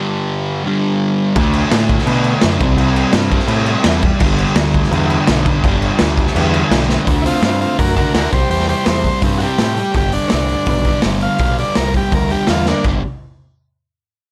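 Swaggering and rowdy, this garage rock excerpt in G major charges along at 168 BPM as a double-tracked fuzz guitar riff opens alone before a growling, overdriven picked bass and a raw, punchy small-room drum kit with dark cymbals and a pumping, saturated sound join at 1.4 seconds, with a drum fill driving into a buzzy vintage combo organ solo at 7.2 seconds, its light vibrato and analog delay sitting up front over the gritty rhythm section in a light reverb.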